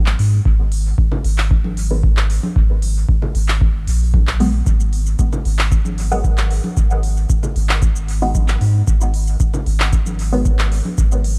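Dub techno at 114 BPM in 4/4 with a straight feel, in G# minor, this short excerpt from a longer piece sets a hypnotic, nocturnal mood inside a dark, digital ambience. A soft, round sub bass opens at 0.0 seconds, sitting up front with a triangle and square-wave tone and sidechain pumping, joined almost at once by a deep house kit of handclaps, hi-hat, shaker and smooth hats. The electronic kick, a deep, tape-warm analog thump re-recorded in a small room, comes in at 0.5 seconds and carries the loudest drum weight. Layered electronic congas enter at 1.1 seconds, sitting low in the mix with their own sidechain pumping and dub echo. From 1.9 seconds a muted, detuned chord stab built from sawtooth and square waves adds a mellow filter pluck with a short decay, treated with phaser, sidechain pumping and dub echo.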